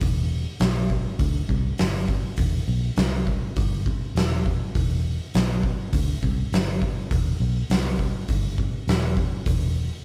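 With little reverb, this sounds like a band playing live in one room, cut from a longer stoner and doom metal piece in E minor at 102 BPM in a straight 4/4 with a heavy, brooding mood. An oversized, low-tuned acoustic kit sits up front with a gritty, saturated edge, a fat snare, a boomy kick, hi-hat and a pumping big-room sound. A fingered electric bass, amped, foam-muted and punchy with tube saturation, holds the low end between E1 and D2 until about 9.9 seconds.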